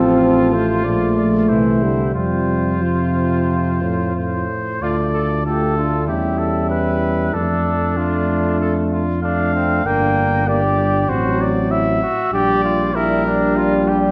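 A stately brass quintet excerpt rings out in a reverberant recital hall, its production dark and warm, at a rubato 95 BPM in 4/4 that starts in F major before turning to D minor at 4.8 s. A clear trumpet with light vibrato and a smooth top carries the melody while a distant, roomy second trumpet sings a warm inner line, and the mellow, soft-attacked French horn and a clear trombone set further back fill out the accompaniment. Beneath them, an up-front tuba anchors the bass with a dark tone as the harmony moves through diminished chords into G minor.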